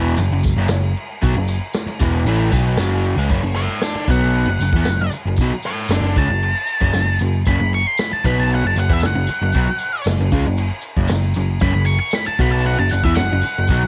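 An octave-fuzz lead guitar, dark and distorted with a cassette-tape grit, takes a solo from 3.6 seconds over a crunchy, double-tracked overdriven guitar riff, a round hollow-body short-scale bass, a punchy vintage drum kit with a rolled-off top, and a jingly tambourine in this raw, menacing garage rock excerpt at 115 BPM in F# minor, recorded at home on cassette.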